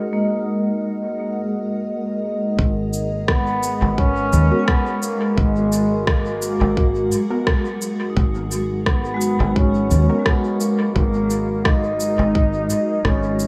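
In this meditative, spacious ambient dub excerpt at 86 BPM in G# minor, a cloudy, evolving granular pad and a dark, ringing hard-mallet vibraphone playing arpeggios in the background are shaped by filter sweeps for the opening 2.6 s, before a foam-muted, up-front fingered electric bass, a tight electronic kick and an echoing electronic cabasa and rim click come in. From 3.3 s a distant, roomy trombone with light vibrato floats over them, carrying a solo melody through dub echo, with a very quiet, muted sawtooth chord stab entering at 4.5 s, the whole mix soaked in dreamy plate reverb.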